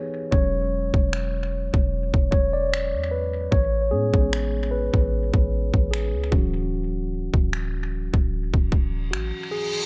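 A mellow tine electric piano leads this tender, romantic contemporary R&B excerpt from start to finish, its clean, direct tone trailed by tape echo as it moves through E69, Amaj9 and Dmaj7 over a gentle swing. A deep, boomy 808-style bass with a sine-like body, a fast attack and decaying notes sits up front beside an electronic trap kit of finger snaps and a hard-clipped kick drum. A reverse cymbal enters at 9.2 seconds to close a dry, echo-heavy mix.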